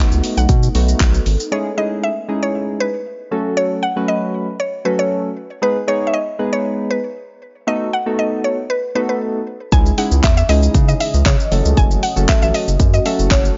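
Energetic, driving dance-pop excerpt at 117 BPM in F# dorian, where a woody, percussive mallet-like synth pluck carries the melody over soft electric-piano-like keys that pump with sidechain and chorus, while a shimmering, ethereal ambient pad drifts in the background with phaser and reverb, and a round analog bass and punchy, layered pop drum kit with handclaps, shaker and hi-hat drop out after the first 1.5 seconds and return at 9.7 s, all captured in a dry, gritty hardware recording.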